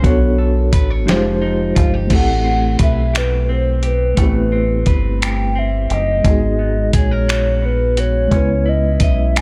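Slow, sultry six-eight R&B at 58 BPM with a yearning pull, built on a gritty, sampler-style drum kit of thumpy kick, snare, hi-hat, finger snaps and crash, up front beside a round, dark fingered electric bass, while a reedy electric piano with fast tremolo and a clean, picked electric guitar fill the middle over rich ninth chords drifting from Bm9 through Fm9, Am9 and Abm9 to Dbm9. At 2.1 seconds a hollow, woody clarinet-like synth lead enters with chorus and warbling vibrato, carrying the melody in a soft, sustained voice. The mix is dry and close, a short cut from a longer piece.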